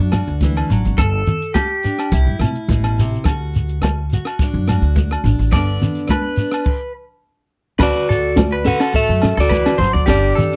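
A lightly swung 4/4 groove from a compact cocktail drum kit, with a punchy kick, a high-tuned snare and dark cymbals, drives this carefree, joyful highlife guitar band excerpt alongside ringing agogo bells, soft-handed congas, a grainy shekere, a woody, thumpy upright bass and a bright, picked steel-string acoustic guitar. From 1.0 seconds a twangy electric guitar through a small old amp plays compressed arpeggios bathed in lush chorus and slapback echo, and a stop arrives at 6.7 seconds. At 7.8 seconds a slightly broken-up electric guitar steps up front with the melody, all captured in a dry, close 1970s-style studio sound.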